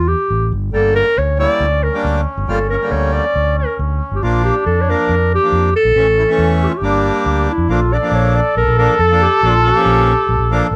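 A soft-attacked, smooth-topped clarinet carries the melody up front over an amped, overdriven electric bass at the start of this festive yet bittersweet klezmer excerpt at 138 BPM in straight 4/4; at 0.7 s a nasal, brilliant trombone with straight mute and light vibrato joins on a second line, along with a reedy, hollow, close-miked accordion, and the harmony moves through Gm, Bb and A under light reverb before a new section arrives at 7.7 s.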